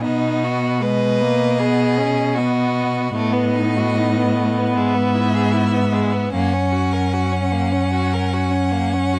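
A dark, lightly reverberant production frames this brief cut from a slow, lyrical romantic movement for string quartet in B major, unfolding at 72-79 BPM in 4/4 with a rubato feel. Two clear, focused violins with vibrato carry the melody and a second line, while a smooth viola supplies the accompaniment and an up-front, rich cello holds the bass; all four are bowed by single players and sound for the full 9.2 seconds. The harmony moves from B through B7/A and E/G# to F#, giving the passage a warm glow.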